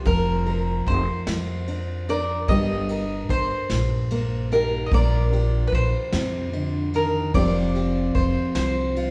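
Acoustic folk in an unhurried 6/8, this nostalgic, peaceful fragment of a longer piece sets an up-front fingerpicked steel-string guitar and a woody, double-strung picked mandolin over thumpy pizzicato upright bass on gut strings and a vintage brush kit with tight kick, dark cymbals and a rolled-off top, heard from further back in a large, wet studio reverb.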